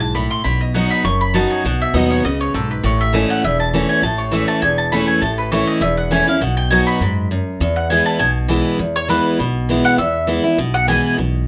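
A moderate studio reverb frames this lively, joyful bluegrass excerpt in E major at a swung 201 BPM, where a fresh-stringed, full-bodied dreadnought guitar picks the accompaniment up front over a woody pizzicato upright bass, a round, double-strung mandolin plays stabs through the first 8.3 seconds during the solo that spans the opening 8.8 seconds, and a second, bright mandolin takes the melody from 9.0 seconds.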